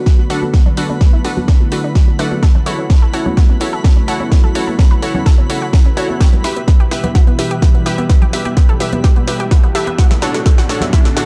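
A punchy, up-front electronic kick drives a straight groove, joined by a house drum kit with a cracking snare and filtered hats, while compressed, saturated congas and bongos sit in the background of this dark, bittersweet progressive house build-up. An evolving, warbling wavetable pad holds mellow chords moving from Bm7 through F#m7 and Em to Dmaj7 under a filter sweep, as a round, nasal analog pluck spins arpeggios with dub echo and a lush, detuned unison pluck adds bright stabs, both breathing with sidechain pumping. A twinkling granular texture shimmers high above, and a very quiet riser enters at 8.3 seconds as a drum fill carries this dreamy excerpt of a longer piece forward.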